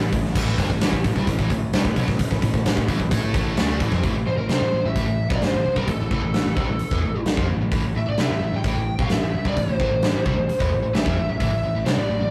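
Driving and aggressive, this hard rock excerpt opens with a very quiet, airy pad holding sustained chords until 4.0 seconds over a bright overdriven guitar riff in the background, a dark, sludgy second guitar riff barely audible beneath it, a round, punchy overdriven bass and an up-front, natural-sounding arena drum kit with a boomy kick, medium-tuned snare, hi-hat and crash, before a lead guitar through a small cranked amp enters at 4.3 seconds with a melody, all captured in a rough rehearsal-room sound with moderate reverb and warm saturation.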